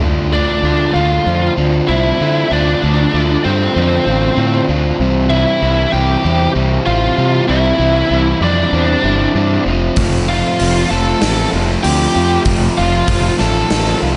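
Set in a half-time 4/4 feel at 96 BPM, this angsty, cathartic stretch of quiet-loud alternative rock moves through Dm7, C and Fadd9 in a short cut from a longer piece. From the start, a twangy, lo-fi electric guitar through a small old amp picks arpeggios in the background with harmonic tremolo and slapback echo until 10.0 s, while an overdriven semi-hollow guitar plays a hollow-bodied riff and a round, up-front fuzz bass with overdrive anchors the low end. Almost immediately a biting lead guitar carries the melody up front, its overdriven tone given a slapback echo. At 10.0 s a compressed fuzz guitar riff joins in the background with distortion and slapback echo, and a big rock drum kit enters with punchy kick, medium-tuned snare and hi-hat in a bright stone room. A moderate concert hall reverb frames it all in a big arena sound with a rolled-off, dark top end.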